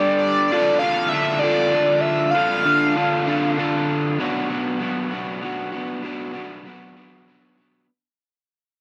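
Set in a moderate studio reverb, this short rock fragment, cut from a longer piece, has a wistful yet carefree mood at a slow 65 BPM in a straight 6/8. A crunchy, dark, double-tracked electric guitar sits up front, picking a riff from B2 to A4 through the whole passage. Above it, a gritty, screaming synth lead built from sawtooth and pulse waves carries the melody between D5 and F5. With its fast attack, long sustain, vibrato and guitar-like bite, the synth runs through distortion, chorus, phaser and tape echo before falling away at 3.5 s. The harmony moves from Gsus2 to Dm and then shifts to Bm at 4.2 s, where the guitar carries on alone as the recording fades out by 7.9 s.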